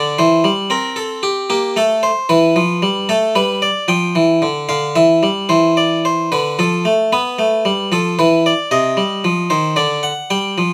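Set in a steady 3/4 at 113 BPM with a straight feel, this short passage cut from a longer piece is a baroque-style two-part invention for solo harpsichord, its mood solemn and contemplative. The single harpsichord, a Flemish-style instrument with one set of strings, sounds plucked and bright, sitting mid-forward and up front in the mix. Its two voices range from C3 up to G5, moving through a sober harmonic path that opens on C/E and passes through Am, G and Em before a second passage begins at 5.5 seconds. That later stretch turns to F, G9 and Cmadd11 before coming to rest on D near the close at 10.7 seconds. Close, detailed microphones capture the instrument with a light touch of reverb, keeping each plucked note clear and intimate.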